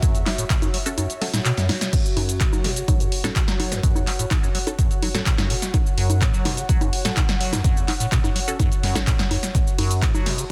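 Acid house at 126 BPM in F# minor, this trippy, hypnotic excerpt from a longer piece sits on a single F# minor chord throughout. A squelchy, resonant acid bass riff runs the whole way, its square-wave tone bright and smooth under a filter sweep, phaser and delay. A punchy electronic kick and an analog drum machine sit up front, re-recorded in a small room, with snare, handclaps, hi-hat, ride, crash, congas and shaker filling out the groove. The kick drops out from 1.0 to 1.9 seconds while a drum fill lands at 1.6. Behind them, a warbling, nostalgic tape-like pad drifts with a lo-fi, detuned tone, carrying chorus, reverb, phaser and sidechain pumping, while a muted, wave-folded dub chord stab plucks in the background from 0.9 to 9.1 seconds, carrying 12-bit sampler grit, phaser and delay. The mix has a digital ambience and a dense, heavily limited modern master.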